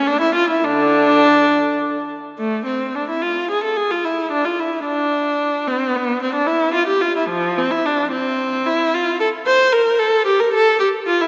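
Classical baroque-style suite movement for unaccompanied viola, flowing and solemn in a rubato 6/8 at 67-76 BPM in dotted quarters, with a single bowed viola, rich, close and up front, singing with vibrato, soft attacks and expressive portamento across a range from D3 to C5, cut from a longer piece and bathed in a wet church reverb with a 3.5 s decay and a dark top end.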